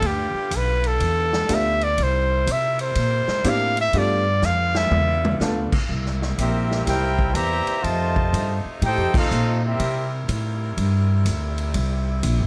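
Captured with close, detailed microphones and a touch of light reverb, this joyful big band swing excerpt moves at 123 BPM, opening with a breathy solo trumpet carrying the melody up front over a woody pizzicato upright bass, a punchy drum kit and a bright saxophone section holding sustained chords in the background, with a clear baby grand piano joining at 1.5 seconds. A drum fill at 4.4 seconds leads into a passage in C major where a trumpet section with soft attack and vibrato takes the melody at 6.4 seconds, shadowed by a veiled, cup-muted trombone section playing a second line far behind. A band accent lands at 9.1 seconds as the swinging groove rolls over G7, C7 and F7 changes.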